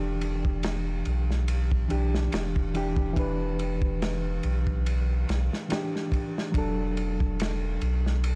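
Melancholic and brooding, this short trip hop fragment unfolds with a lightly swung 16th-note feel. A reedy, clean electric piano carries the accompaniment throughout, heard through its built-in speakers and colored by harmonic tremolo and tape echo as it holds on Em7 before shifting to D/E at 6.5 seconds. Beneath it, a deep, round sine sub bass with a fast attack sustains its notes from the very start. At 0.2 seconds a crunchy acoustic breakbeat kit enters with a punchy kick, a medium-tuned snare and dark ride cymbal, its small-room sound saturated and smooth with a rolled-off top. All three parts sit up front in a dry, gritty cassette-tape recording with little reverb, giving the piece an intimate, close-up feel.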